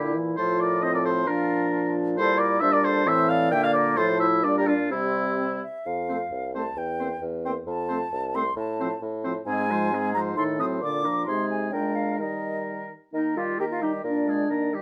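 Lively and graceful, this short excerpt from a quick classical-period wind quintet movement at 133 BPM in 2/4 moves with rubato from F major into Eb major at 9.5 seconds, as the pure, vibrato-tinged concert flute sings the melody over an up-front oboe second line, while the mellow French horn, the distant, roomy clarinet and the lightly vibrato bassoon bass supply accompaniment in a moderate studio reverb.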